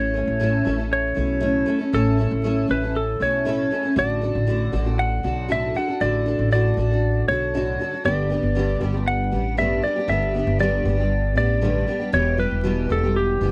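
A bright, twangy clean lap steel guitar carries the melody from the first beat of this heartfelt, easy-going acoustic pop excerpt in G lydian at 118 BPM, over a double-tracked picked steel-string acoustic guitar and a woody pizzicato upright bass, all three up front in a dry, close 1970s-style studio sound with light reverb and vinyl crackle as the chords move from A through D/A and G to Em.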